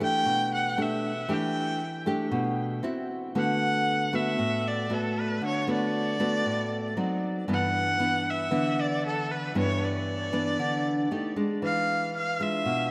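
This bossa nova excerpt at 116 BPM has a breezy, sophisticated mood. A rich, focused bowed erhu carries the melody with vibrato and portamento, set distant in a diffuse ambient delay, while a full-bodied, fingerpicked classical nylon-string guitar accompanies up front. Chords such as Em7, D6, D7b9 and Ebmaj7#11 move under a dreamy mix soaked in plate reverb, and the music settles into D major from 3.4 seconds.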